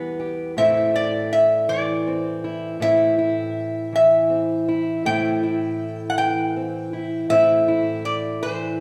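Set in a slow, straight 12/8 at 53 BPM counted in dotted quarters, this short clip of acoustic country blues is cut from a longer piece and tuned slightly flat at A4 = 439 Hz. The mood is smoky and brooding as the harmony moves from Em to Am at 0.6 seconds. A metal-body resonator guitar carries the melody with a slide and fingerpicks, its bright, nasal, metallic voice sitting between B4 and G5. Beneath it, an old ladder-braced acoustic guitar fingerpicks the accompaniment from E2 to G4, sounding dark and boxy. Both guitars sit up front and play for the full 8.8 seconds, wrapped in the lingering reverb of a recital hall or church.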